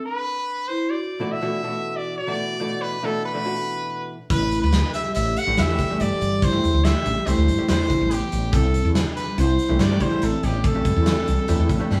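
Tense and brooding, this progressive band instrumental in 5/4 opens with mellow soft-mallet vibraphone and a brilliant, forceful trumpet melody, then a clean, compressed archtop guitar joins at 1.2 seconds before a round, woody fretless bass and a punchy big rock drum kit arrive together at 4.3 seconds, the band heard live in a small room with moderate stone reverb.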